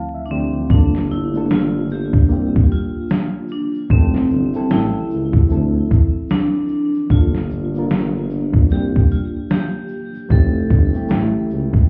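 A muffled, crackly sound, as if heard through a wall in a club with a hint of reverb, frames this nostalgic, reflective lo-fi hip hop excerpt at 75 BPM in G dorian, swung on the sixteenths. A reedy electric piano with fast tremolo and cassette-tape character opens with a short fill, joined by the vibraphone at 0.3 seconds, before a thumpy, overdriven sampler-style kit of kick and snare joins up front at 0.7 seconds, along with a mellow, vibrato-laden jazz tuba bass and a faint, grainy tube shaker. Over a cycling Dm7, Gm7, C7sus4, Fmaj7 and A7 progression, a bright, ringing vibraphone played with hard mallets carries the melody through tape echo.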